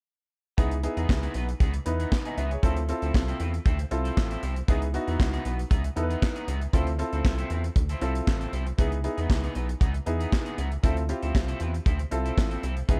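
A steady, straight 4/4 groove at 117 BPM drives this slick, funky slice of early-eighties boogie funk, cut from a longer piece. A modern acoustic drum kit sits up front with a punchy kick, a medium-tuned snare, hi-hat and handclaps, all heard from 0.6 seconds through to 13.0 seconds. Beneath it, a rubbery square-wave bass with a resonant, bouncy filter pluck and a hollow, detuned character holds the low end. A clear baby grand piano supplies intimate accompaniment, its action noise faintly audible. A twangy, picked electric guitar on the edge of break-up plays a riff coloured by analog chorus. The harmony alternates between C#m9 and Dm9 every bar, and studio reverb gives the production a dark, warm finish.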